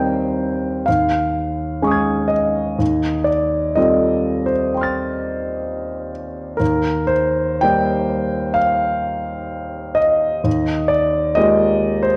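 A concert grand piano, intimate and up front with deep bass, long sustain and the mechanical noise of its action clearly audible, carries this serene, luminous fragment of an impressionist solo piano piece. Played with a flexible rubato, it opens on a high Eb6 before moving through Dbadd9/Eb, F9/Eb, a plain Eb chord and Fm11/Eb, all resting on Eb in the bass, spanning Eb2 to A6. A generous recital hall reverb surrounds the polished tone, and the 12.2-second passage is cut from a longer work.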